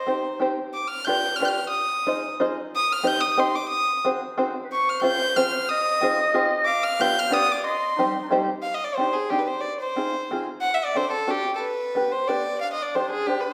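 Heard from further back in a wet recital hall, this whirling, nostalgic musette waltz in C harmonic minor spins along at 182 BPM in 3/4, with a nasal, gut-string violin carrying the melody up front in an airy-bowed period style, a raspy, growling jazz clarinet adding a scooped second line that comes and goes, returning at 4.6 s and again at 12.6 s, and a twangy, plunky fingerpicked open-back banjo supplying the percussive accompaniment before the piece turns to its second section at 8.6 s.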